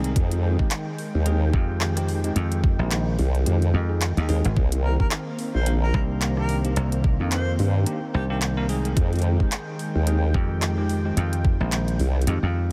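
A swung 109 BPM glitch hop groove in 4/4 is driven by an overdriven, knocking electronic kick up front and a layered pop kit of handclaps, hi-hat and rim click, both with a small-room character. A chorused, formant-filtered wobble bass blends sawtooth and sine, and a bright, punchy thumbed slap bass sits alongside it, while a detuned sawtooth analog pad and bell-like tine electric piano stabs with 12-bit sampler grit pump in the background over Fm9 and Cm9 chords. From 4.8 to 8.4 s, a distant, mellow jazz harmonica solo with scooped notes and tongue slaps drifts through ambient delay, giving this gritty, playful excerpt its loose, roomy charm.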